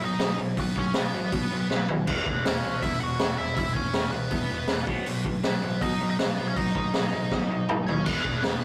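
A rough rehearsal-room recording with tube saturation and light reverb captures a rebellious, upbeat punk rock excerpt at 160 BPM in straight 4/4, moving between B and E5 chords. Up front, a raw garage drum kit with a high-tuned snare and punchy kick plays fills at 1.7 and 7.3 seconds beneath a bright distorted guitar riff and a nasal lead guitar with a parked wah carrying the melody through overdrive and digital delay. A growling picked bass sits in the background, and an overdriven semi-hollow guitar joins at 8.1 seconds on the closing E5 chord.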